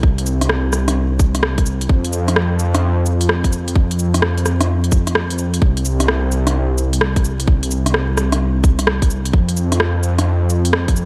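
A swung future garage groove at 129 BPM in 4/4 drives this wistful, rainy clip cut from a longer piece, with a tight electronic kick and a crisp garage kit of hi-hat, cabasa and rim click, both tape-toned and re-recorded in a large room, sitting up front. Alongside them a menacing detuned saw bass, saturated and evolving through a filter swell, pumps against the sidechain between C2 and F2. A short break arrives from 5.2 to 5.6 seconds, and a layer of vinyl crackle hangs over the dry mix.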